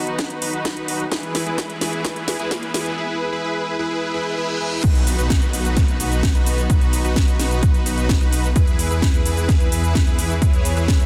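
A straight 4/4 groove at 129 BPM drives this euphoric, uplifting festival progressive house excerpt in B major, cut from a longer piece, where a build-up with a drum fill and a reverse cymbal leads into the drop at 4.8 seconds, as the chords move between B and E. An overdriven, punchy electronic kick sits up front beside a layered house kit of cracking snare, metallic hats, cabasa and crash, both re-recorded in a large room, while a huge, thick supersaw riff with vibrato and a low-pass filter pumps over a lush, chorused detuned saw bass in the background. Bright, earthy chamber strings hold sustained chords behind them, and very quiet risers and downlifters run from 0.2 to 8.6 seconds, all under light reverb and a dense, heavily limited master.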